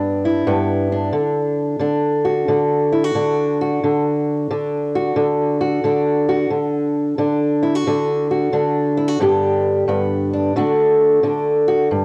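A home cassette recording with light reverb and a small room ambience holds this swaggering, gritty blues cut from a longer piece, swinging its eighth notes at 89 BPM in 4/4. A lone fingerpicked, ladder-braced acoustic guitar sits up front with a dark, woody, boxy tone from old strings and a cassette tape colour, ranging from G2 to G4. It moves from G to D at 1.1 seconds, returns to G at 9.2 seconds, then heads back to D at 10.6 seconds.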